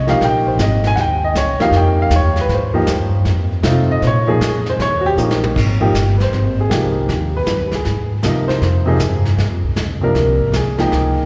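Grand piano and upright bass open together on a rootless, lush chord, with a brushed drum kit slipping in at 0.1 seconds in this swinging, playful jazz trio passage cut from a longer piece. The piano carries the melody with an intimate, natural tone, deep low end and long sustain, its action noise audible up front. Beneath it, the pizzicato upright bass sits equally forward, woody, dark and growly on steel strings. The brush kit stays lower in the mix, muffled and lo-fi with dark cymbals, a medium-tuned snare and a punchy kick, its top end rolled off as if captured in a small room. A short drum fill at 5.2 seconds leads into a grand piano solo from 5.6 seconds, moving through mellow major-seventh and minor-seventh harmony. The whole trio is bathed in a long, wet church reverb that gives the swing a spacious, glowing feel.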